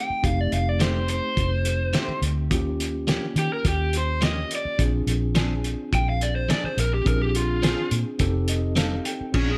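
Light reverb surrounds this laid-back, swaggering straight-eighth soul blues, cut from a longer piece. A raw, overdriven garage guitar carries the melody up front over a mellow tine electric piano, a dark, round, foam-muted fingered bass and a cloth-damped, thuddy, lo-fi drum kit with muffled cymbals, a fat snare and a tight kick. A bright, compressed clean guitar recorded direct adds stabs with spring reverb and slapback echo from 0.8 seconds, and the electric piano slips in a fill at 8.2 seconds as the chords move from F9 through Eb9 and Bb9 back to F9.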